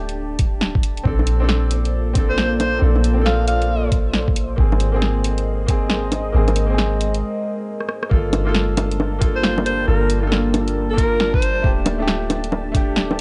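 Rainy and ghostly, this future garage excerpt moves at 136 BPM in G minor with swung 16ths, as a deep, detuned ambient pad with chorus and a woody upright piano with tape echo both pump against the sidechain over a round, soft 808-style bass. A garage kit of cracking snare, rim click, hi-hat and bongos sits up front with 12-bit sampler grit, joined at 0.4 seconds by a muffled, thumpy, overdriven electronic kick. A breathy, intimate alto saxophone with vibrato and scooped notes drifts in at 2.3 seconds and returns at 9.4 seconds through gritty tape echo, after a brief break and drum fill that lead into a closing passage opening on Gm7.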